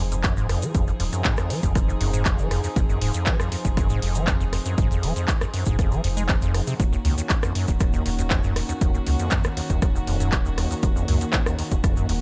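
A small room ambience frames this raw, gritty acid house excerpt at 119 BPM in a straight 4/4. It features an up-front, punchy electronic kick, a tape-warm analog drum machine of handclaps, hi-hat and rim click, a grainy, bright egg shaker, a rubbery, resonant square-wave acid bass riff with filter sweeps and dub echo, a round sine sub bass with tube saturation and sidechain pumping, and distant, floating bowed strings holding pumping chords as the harmony moves from Fm7 to Ebm7 at 6.8 seconds.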